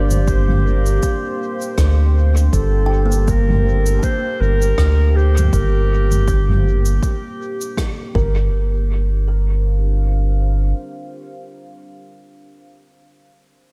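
A mellow, distant clarinet leads this meditative ambient dub excerpt, its soft-attack solo melody trailing through an analog delay over a deep, moody pad whose detuned, warbling chords are thickened by chorus and its own reverb. Beneath them, a round analog bass sits up front, dark and sustained in the low register. A soft-mallet kit of cabasa, rim click and toms sounds roomy and far off, its hits scattered by dub echo, while an overdriven electronic kick, re-recorded in a large room, anchors the lightly swung groove. At 2.9 seconds a woody, hollow-boxed kalimba enters in the background with ringing thumb-plucked arpeggios, also fed through analog delay. After the clarinet drops out at 7.8 seconds and the percussion falls away, the pad, bass and kalimba carry the deep, contemplative mood, with the kalimba ringing on alone to the end at 13.0 seconds.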